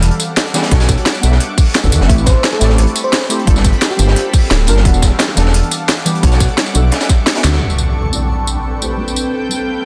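Mellow, deep chord stabs with chorus, phaser and delay open this lush, soulful liquid drum and bass passage at 174 BPM in A dorian, alongside a shimmering, ethereal pad, a rumbling detuned saw bass with tube saturation, a crisp, cracking up-front drum and bass kit with tambourine, and a gritty, dark breakbeat kit from a small room, with a tight, tape-toned electronic kick joining at 0.7 seconds. A sparkling, bell-like FM electric piano with chorus and dub echo carries a brief melody over the minor-ninth chords, before the kick drops out and a drum fill and band accent lead into an up-front impact at 7.6 seconds. A filter sweep on the synth stab then carries the closing bars, as the pad and stab ring on over the drum and bass kit in a dense, heavily limited, lightly reverberant mix.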